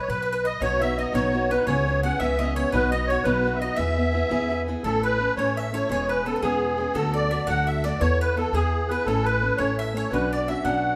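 Celtic folk jig in a lively, rollicking 6/8 at 114 BPM, starting in E major and shifting to A major at 4.8 s, in this fragment cut from a longer piece. A reedy, shimmering musette accordion with a vintage, band-limited tone carries the melody up front, while a bright bowl-back mandolin with picked double strings plays a softer second line in the same register. Underneath, a woody, thumpy gut-string upright bass plucks the low end, and a boxy fingerpicked archtop guitar enters at 0.6 s, the whole band sounding live together in one large studio room with lush reverb.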